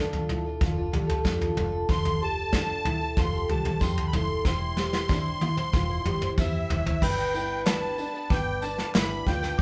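A soft brush drum kit sits up front in this anthemic, hopeful indie folk passage, its medium-tuned snare and tight kick rounded off with a rolled-off top, and it plays a drum fill from 4.5 to 7.0 seconds. Beneath it, a picked twelve-string acoustic guitar gives boxy, woody accompaniment on old strings, with a shimmering octave-doubled sheen, while a dark upright piano plays mellow, vintage arpeggios in the background. A foam-muted fingered electric bass adds a round, amped low end, and a jingly tambourine sits further back. A reedy musette accordion carries the melody from 1.9 seconds, and at 7.0 seconds a glockenspiel struck with rubber mallets enters with a bell-like, ringing second line as the arrangement builds and the chords move to G. Near the close, a very quiet group handclap adds a crisp, dry touch, all heard as a band playing live in one room with moderate studio reverb in this short cut from a longer piece.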